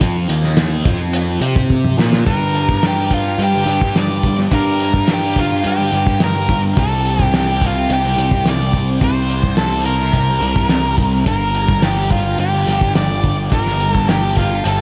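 A thick, double-tracked fuzz guitar riff opens this dark, mysterious psychedelic rock passage in G minor at 107 BPM, joined from the start by an overdriven, picked electric bass sitting up front and a cloth-damped drum kit with a muffled, gritty thud, fat snare and tight kick. The guitar carries a phaser over its distortion. Over the opening bars the harmony moves through power chords. A drum fill at 1.7 seconds leads into the main section at 2.3 seconds, where an octave-fuzz lead guitar with a dark, up-front tone and analog delay enters to carry the melody. Beneath it the band settles on G minor and C power chords in a steady, straight 4/4. The whole mix is soaked in a huge ambient reverb with a rolled-off, dreamy top, giving this passage, cut from a longer piece, a hazy, shadowy atmosphere.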